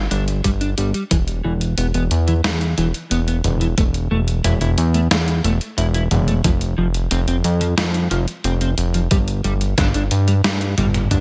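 Moody and cinematic, this synthwave excerpt moves at 90 BPM in a straight 4/4, cut from a longer piece and built on power chords around G5, E5 and F5 with a chordless stretch in the middle. A fat, detuned sawtooth bass sits up front with a saturated filter pluck and sidechain pumping, while a dark, compressed clean electric guitar plays a picked riff through analog chorus and delay. A tape-toned, sampler-style 8-bit drum machine with gated reverb carries hi-hat, snare and toms from 0.1 seconds, joined at 0.4 seconds by an overdriven, knocking electronic kick, and a drum fill arrives at 10.8 seconds in a fairly dry overall mix.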